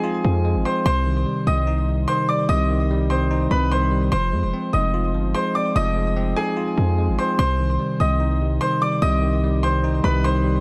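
Hard-hitting and eerie, this half-time trap cut sets a bright baby grand piano melody, touched with delay, over a bell-like, clean tine electric piano that carries the accompaniment through Fm7 and Cm chords. A punchy, heavy 808-style bass with a noise layer, fast attack and decaying tail enters at 0.2 seconds and sits up front, while the piano's brilliant, intimate, polished and present tone reveals audible action noise. Light reverb colours the recording in this excerpt from a longer piece.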